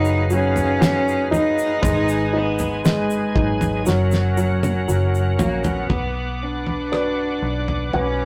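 A rough rehearsal-room recording with tube saturation and a moderate studio reverb frames this short cut from a longer pop ballad, emotional and tender at a slow 59 BPM in 4/4 with a straight feel. A single bowed cello carries the melody, played sul tasto with light vibrato, a soft attack and an airy, intimate bow. Alongside it, a woody, polished upright piano provides the accompaniment, while a reedy tonewheel organ holds clean sustained chords through chorus vibrato and a slow rotary speaker. A foam-muted fingered electric bass gives a round, amped low end, and a grainy tube shaker sits close and dry in the background until 5.9 s. A dark, damped 70s drum kit with a fat snare, tight kick, rim click and toms comes in at 0.6 s and plays a fill from 3.9 s, leading into a new section at 5.9 s where the harmony turns to B minor.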